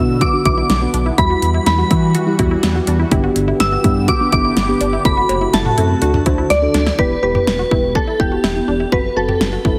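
A lush hall reverb and heavily compressed, radio-ready sound frame this melancholic, cool synth-pop excerpt in E minor, moving at 124 BPM in a straight 4/4. Up front, a shimmering bell with halo carries the melody from G4 to E6, its dreamy, warbling vintage FM tone thickened by ensemble chorus and analog delay. Beneath it, a mellow FM electric piano plays soft, round accompaniment with chorus and phaser, while a bright unison pluck spins detuned sawtooth arpeggios through phaser and analog delay. A sweeping resonant pad holds evolving, full-bodied chords with a filter swell until 7.0 seconds, and a smooth, dark synth bass anchors the low end from E1 to E3. The pop drum kit enters at 0.2 seconds with a punchy kick, fat snare, metallic hats, cowbell and toms, overdriven and pushed forward, and a fill from 6.5 seconds leads into a new section at 7.0 seconds that settles on Em before turning to F#dim.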